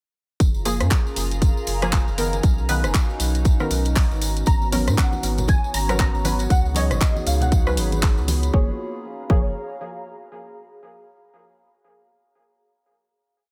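Warm and sunny, this short deep house piece moves at 118 BPM in F# major with a swung sixteenth-note feel, opening straight into a drop at 0.4 seconds that carries through to a closing F#maj9 chord at 8.5 seconds. An up-front, punchy electronic kick drives a four-on-the-floor pulse beneath a programmed house kit of claps, rim clicks and closed and open hi-hats, joined by a jingly acoustic tambourine playing sixteenths in the background. A round, deep analog bass holds a dotted rhythm and pumps against the kick, while a hollow, flute-like pad sustains chords and a warbling, nostalgic tape-like pad drifts in at 0.9 seconds with its own built-in reverb. Muted, dark dub chord stabs land in syncopation, coloured by lush chorus, 12-bit sampler grit and tape echo, moving through F#maj9, G#m11 and C#7sus4. From 4.5 seconds a soft, gentle pluck sketches a short call-phrase motif through chorus and digital delay, and very quiet, close and dry congas and bongos add syncopated hand-drum accents before the final chord rings out.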